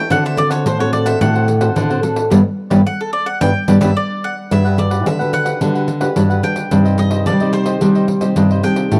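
Lively and festive, this samba and choro passage in G major moves at 109 BPM in a straight 4/4, with a woody, double-stringed mandolin carrying the melody as a solo through the first 4.5 seconds. A crisp picked cavaquinho and a bright, fresh-stringed fingerpicked nylon-string guitar fill out the accompaniment, the guitar sitting up front, while a second nylon-string guitar supplies a warm, thumb-plucked bass line. A jingly, saturated pandeiro played with hard hands drives the rhythm, the band hits an accent from 2.3 to 4.5 seconds, and the chords move from D7 to G, then Gmaj7 and Cmadd9/G, all captured in a dry, close 1970s-style studio sound with a small room reverb.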